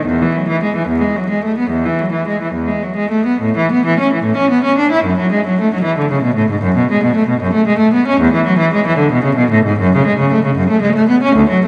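A classical, baroque-style suite movement for unaccompanied cello, this serene yet dance-like fragment moves in a lilting 12/8 at roughly 66-79 BPM in the dotted quarter, with a free, rubato feel, shifting from E major to A major at 3.4 s. A single bowed cello sits up front for the whole 11.7 seconds, its tone clear and focused with vibrato, ranging from D2 to E4 and tuned to A4 = 438 Hz. The playing hangs in a wet cathedral reverb with a long 4.4-second decay, while vinyl crackle adds an aged patina to the recording.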